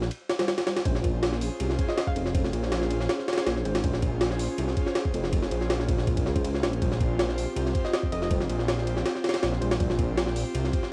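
A gritty, pitched-up jungle sampler-style drum kit leads this raw, nostalgic drum and bass excerpt at 161 BPM, its thumpy kick and high-tuned snare pushed up front with overdrive, studio reverb and cassette tape grain across hi-hat and ride cymbal. Beneath it, a dark detuned saw bass rumbles deep and beating, sustained with tube saturation and sitting just as far forward. Set in Bb dorian, the harmony moves from Fsus2 to Bbm9 at 0.9 seconds and returns to Fsus2 at 6.8 seconds, carried by an airy, breathy pad that enters at 0.9 seconds with chorus and a slow attack in the background. A mellow tine electric piano drops clean stabs in two passages, soaked in dub echo and tape, while a hollow, nasal square pluck adds brief chorused melodic figures high in the register around 1.9 and 7.8 seconds. The whole fragment sounds like a home cassette recording in a small booth, dusted with vinyl crackle.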